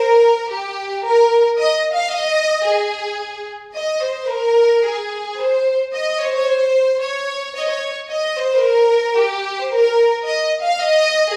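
A rich, lush violin section opens alone and carries this Mexican folk excerpt by itself, bowed with smooth, even vibrato and set up front. At 111 BPM in a straight 2/4 in Ab major, the proud, romantic line stays between G4 and F5, stating a phrase and then repeating it from 3.7 seconds. A wet studio reverb gives the ensemble a live, roomy glow.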